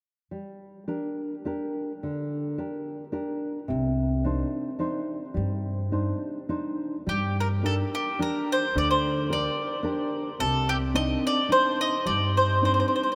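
A huge, wet reverb fills this short cut from a longer Italian folk serenade, as if played in a vast, echoing space, with a romantic, wistful mood in G minor at 107 BPM in a swung, rubato 3/4. A dark, full-bodied nylon-string guitar, thumb-plucked and up front, opens alone on a Gm chord, and a woody pizzicato upright bass joins at 3.7 seconds as the harmony moves to Cmadd9. At 7.1 seconds the bright, double-strung bowl-back mandolin enters up front with the picked melody.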